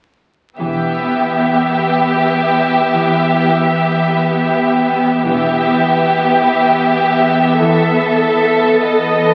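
At 0.6 seconds the full string body and harp enter together in this slow, elegiac movement in E minor, taken from a longer piece and unfolding in a rubato 6/8 at 52 dotted-quarter beats per minute. The violins carry a focused, vibrato-laden melody while a second violin line sits up front in lush ensemble bowing, supported by rich violas in the background, a ringing fingerpicked harp playing arpeggios, and smooth cellos carrying the bass; a distant double bass section adds its low E only briefly, at 0.6 and again at 5.3 seconds. The yearning harmony moves from E minor to B7 over E at 7.6 seconds, heard through a wet concert-hall reverb and the crackle of a very old 78 rpm record.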